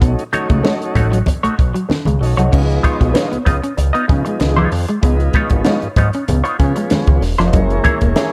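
A straight 4/4 funk groove struts along with a playful swagger, driven by a compact cocktail drum kit sitting up front: a punchy kick, a high-tuned snare, hi-hat, and dry, dark-toned crash cymbals. A fat analog bass, also up front, brings thick, detuned sawtooth and square-wave tones, a fast attack and a moving filter sweep, while bright, thin-skinned, low-tuned congas played with hard hands sit in the background. A twangy, picked electric guitar at the edge of break-up repeats a riff, and a tonewheel organ adds smooth, clean stabs with vibrato through a slow rotary speaker. From 0.3 s a clean, fingered semi-hollow electric guitar joins in accompaniment, its compressed hollow-body tone shaped by wah and spring reverb. The harmony moves from Cb9 to Db9 at 2.5 s and to Gb9 at 7.5 s, all within a dark, warm production with light reverb in this short cut from a longer piece.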